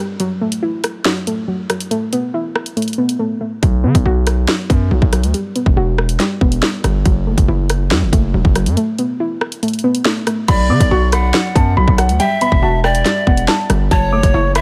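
A distorted 808-style bass dominates this tense, ominous drill excerpt, its heavy, saturated tone arriving at 3.6 seconds and sitting up front with an aggressive, decaying punch. The hip hop groove moves at 140 BPM in 4/4 with a half-time feel, in B minor. A soft, round pluck opens the piece, its dark, chorused and low-pass filtered tone carrying the accompaniment through chords such as F#m7, Asus2 and Emadd9. The electronic drill kit enters almost at once, with a hard-clipped kick, sharp snare, rim click, crash and warm hats placed up front, while breaks thin the texture early on and again before the second section. At 10.5 seconds a worn baby grand piano takes the melody with long sustain, filtering and delay, joined by breathy, reedy pan pipes whose cane chiff and vibrato trace a second line through a digital ambience.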